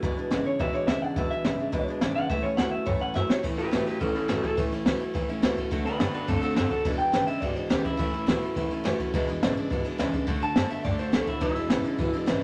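Rockabilly at a rowdy, rollicking 211 BPM in A major, cut from a longer piece, where a twangy, slightly broken-up electric guitar takes a clean solo melody from 0.5 s over a brighter, up-front electric riff, a full-bodied picked steel-string acoustic guitar, a woody, thumpy pizzicato upright bass sitting in the background and an up-front brushed drum kit with dark cymbals and a high-tuned snare, whose fill at 3.2 s leads into the E7, A and D changes of the next section, all in a moderate studio reverb.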